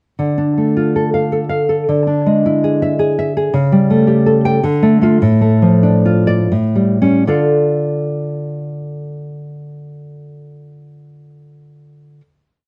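A solo nylon-string guitar carries this brief romantic piece in D minor, its woody, thumb-plucked tone and the character of old strings giving it a passionate, melancholic voice. Set up front in the mix, the guitar unfolds broken chords across a span from A2 to G5, moving in 3/4 with a free, rubato feel as the tempo drifts between 74 and 117 BPM. The harmony travels from D minor through E7 over a D bass, A7 with C# in the bass, and back to D minor before reaching A7 and resolving home. From 2.7 seconds the pace slows down, and at 7.3 seconds the music settles onto a final D minor chord that rings until about 11.6 seconds. A moderate studio reverb and a dark, warm production surround the classical instrument, lending the whole piece a passionate, melancholic atmosphere.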